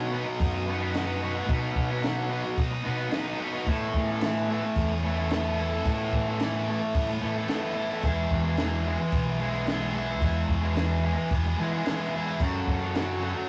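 Upbeat and carefree, this short indie rock excerpt moves at 110 BPM in E major, with a bright, picked high-gain distorted guitar and an up-front, overdriven semi-hollow guitar playing riffs over a round, dark fretless electric bass, while a compact cocktail drum kit with a punchy kick, high-tuned snare, hi-hat and rolled-off top enters at 0.4 seconds, all captured in a rough rehearsal-room recording with warm saturation and moderate studio reverb as the chords move from B through Asus2 and E to F#m.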